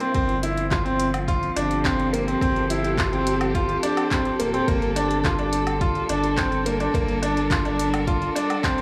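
A bright, up-front concert grand piano riff with tape echo opens over warm, bowed string quartet chords that pump with the sidechain and a deep house kit of handclaps, hi-hat and woodblock, while a deep, layered electronic kick and a round, dark analog bass join from 0.1 s in this hypnotic, intimate piano and strings electronica excerpt, with the harmony moving from F/G to Gm7 at 4.7 s inside a lush hall reverb.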